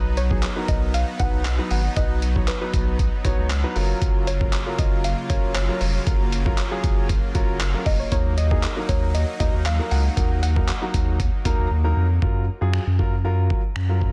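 Dance-pop in F# major at 117 BPM, euphoric and carefree, cut from a longer piece, where an intimate concert grand with audible action noise, a lush detuned supersaw pad in the background and a deep sine sub bass all pump with sidechain from the start, a soft, round pluck melody with chorus and dub echo floats above, and a gritty, tape-warm sampler-style kit of thumpy kick, hi-hat, handclaps and finger snaps sits up front with softly clipped snare, moving through B, F#maj7 and D#m before a silent gap at 11.7 seconds leads to a closing F#maj7 passage in a dense, heavily limited modern master.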